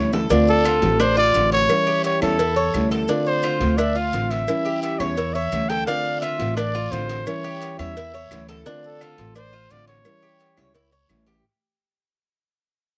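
A short drum fill opens this nostalgic, sultry Cuban son and guajira at 172 BPM in D minor, where fingerpicked nylon-string guitar, a metallic Cuban tres playing arpeggios with slapback echo, and a thumpy, gut-strung upright bass up front cycle between Dm7 and A7, while low-tuned bongos and cowbell and grainy maracas sit in the background alongside a raspy distant guiro and faint woody claves, and a breathy, whispered solo trumpet with vibrato and its own slapback echo carries the melody intimately up front from 0.5 seconds as the whole piece fades out over its dry, outdoor sound.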